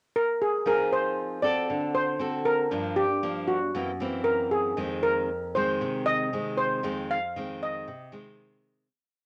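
A straight 4/4 bossa nova groove at 116 BPM in F minor carries this wistful, melancholic short piece, where a shimmering, dry, close-miked steel pan struck with hard rubber sticks sings a motif-based lead from 0.2 seconds over a fingerpicked nylon-string guitar that enters at 0.7 seconds with thumb bass, syncopated plucked chords and the odd finger squeak through Fm7, D7, Gm7 and Gb7#11, both parts up front with a cassette-tape tint in a lightly reverberant home recording that fades out from 6.8 seconds.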